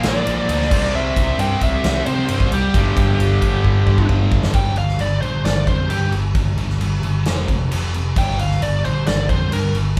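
An aggressive, menacing hard rock passage in G minor opens at 133 BPM with everything at once: a bright, biting lead guitar carrying the melody over a wall of rhythm guitars, picked electric bass and a big acoustic drum kit. Three picked guitars play riffs in the background, one warm and overdriven, one scooped and high-gain, and one tight, distorted and double-tracked, moving through Bb and C before settling on G power chords. The bass sounds dark, round and punchy, while the up-front kit pairs a tight kick and medium-tuned snare with bright crash and ride cymbals in a natural, roomy sound. A drum fill at 3.6 seconds leads into the lead guitar solo at 4.5 seconds, where the overdriven and tight rhythm guitars drop out and the scooped guitar, bass and drums carry on beneath it. The band plays live together in a large studio with moderate reverb, and the passage is cut from a longer piece.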